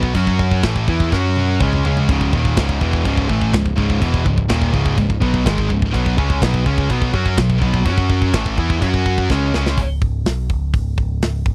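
A straight 4/4 pulse anchors this epic, aggressive heavy metal excerpt, cut from a longer piece, with a tight metal drum kit up front, its bright cymbals, medium-tuned snare and tight kick heard through crash, hi-hat, toms and drum fills at 1.1 and 9.3 seconds. Three distorted guitars play the riff together, two of them bright, picked and high-gain, while a third, a double-tracked fuzz guitar, sits in the background with a thicker, warmer tone. Underneath, an overdriven picked electric bass growls with a punchy, amped edge. The harmony moves through power chords and suspended shapes, from F#5 and Asus2 to C#5, C#m and B5, before the guitars drop out at 9.8 seconds, leaving bass and drums to carry on until 11.5 seconds. The sound is dry and close, like a 1970s studio recording with little reverb.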